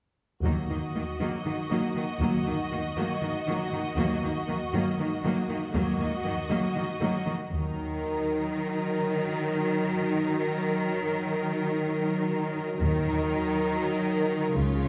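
Cinematic string-and-brass writing in Eb minor, epic and heroic in mood, moving at 238 BPM counted in eighths across an uneven 7/8 metre with a straight feel. Violas carry the accompaniment from 0.4 s with a warm, vibrato-laden tone, while an up-front cello section holds the bass with expressive portamento and a double bass section sits beneath, dropping out at 8.0 s and returning at 12.8 s. A second violin line, focused and smooth on top, enters just after the start. At 7.5 s the music begins to build, as a distant, lush violin melody arrives in the background alongside a dark, roomy French horn section sustaining soft-edged chords. The whole is cast in a wet scoring-stage reverb heard from further back in the room, and the passage is cut from a longer piece.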